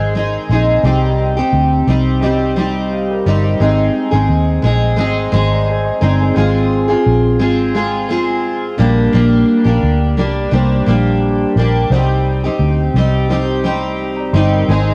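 Acoustic pop with a sunny, easy-going mood at 87 BPM in a straight 4/4, this excerpt from a longer piece moves from Ab through Cm, Fm/Ab and Gm/Bb before returning to Cm. A full-bodied, double-tracked steel-string acoustic guitar with cassette-tape colour sits up front beside a dark, round, foam-muted electric bass, both playing from 0.0 s. A woody upright piano with long sustain, also given a tape tint, joins in the background at 0.8 s. The whole has the homely feel of a cassette home recording with light studio reverb.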